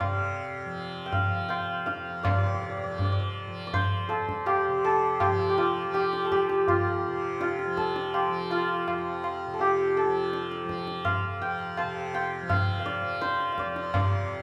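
A hammered santur, ringing and placed up front, opens this brief fragment of Hindustani classical music alongside a softly plucked tanpura drone and a high-tuned tabla, all three sounding from the very start. The mood is meditative and serene, with the santur carrying the melody in a shimmering, warm tone over the bright, buzzing low drone. The tabla sits at a lower level, its acoustic sound made firm by compression and a saturated edge. A short opening passage gives way at 2.2 seconds to a longer second passage, and the pulse speeds up across the whole fragment. A reverberant recital-hall ambience with a 1.7-second decay surrounds the ensemble, and the tabla falls away at 14.2 seconds as the santur and tanpura carry on to the cut.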